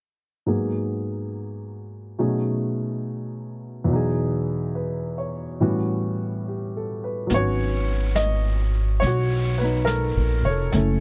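A grand piano opens this wistful, intimate jazz ballad at 0.5 s, sitting up front with a natural, short-sustained tone as it moves through G#m7, B13, Emaj7 and A13 chords over a gentle swing. At 7.3 s the harmony settles onto G#m11, and an upright bass and a brushed drum kit join the piano for the closing stretch of this excerpt. The bass is played pizzicato, woody and up front, rooting the low end. The drums sit much further back: brushes on a medium-tuned snare with hi-hat, their sound dark, smooth and rolled-off at the top, as if captured in a small room. Light reverb and a dusky, warm production give the whole passage a close, late-night feel until it cuts off at 11.0 s.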